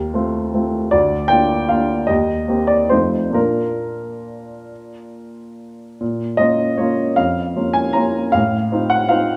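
A warm, natural baby grand piano sits up front in this graceful, elegant classical waltz fragment, played solo with rubato in 3/4 at 132-162 BPM and spanning D2 to Bb5, opening in Bb major before turning to Bb minor at 6.0 s, all bathed in a wet recital hall reverb.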